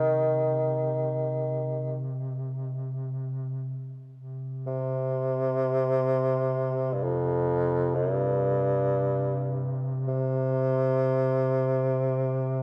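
Bathed in a dark, wet church reverb with a long 3.4-second tail, this fragment of a mournful, longing Caucasian folk lament sets a mellow, distant bassoon singing a classical-style melody with vibrato over a duduk holding a drone on C3, shaded by its own folk vibrato, across the full 12.6 seconds.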